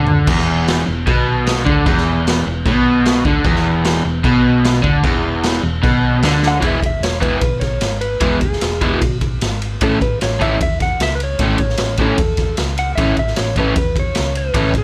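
A crunchy, double-tracked overdriven guitar drives a raw, rowdy garage rock riff in E mixolydian at 151 BPM, backed by a round, hollow-body fingered bass and a gritty, boomy drum kit with dark cymbals in a pumping small room, and a clean, compressed lap steel enters at 6.5 seconds with a dark slide melody and volume swells over chords moving from E to A.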